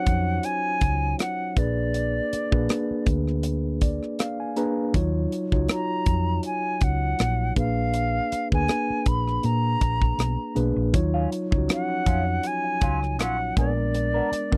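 A pure, vibrato-tinged silver flute sings the melody over mellow tine electric piano from the very start of this bittersweet, cinematic 1970s-style soul piece in Eb minor at 80 BPM with a gentle 16th-note swing, joined at once by a round, dark hollow-body fingered bass and a tight, dry funk kit of hi-hat, kick and rim click, with the piano adding a fill at 3.4 seconds and a clean, scooped semi-hollow guitar riff through wah arriving at 10.9 seconds, all in a close 1970s-style studio sound.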